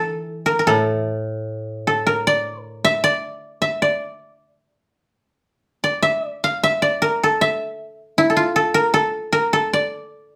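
Heard from further back in a reverberant studio, this austere, solitary fragment of Japanese traditional chamber music drifts in rubato at 77 BPM in 2/4 in D hirajoshi, with an up-front, mellow koto carrying the melody through to 10.4 s while a softer, warmer second koto in the low register accompanies it only until 3.0 s, both instruments dry, woody and plucked with fingerpicks.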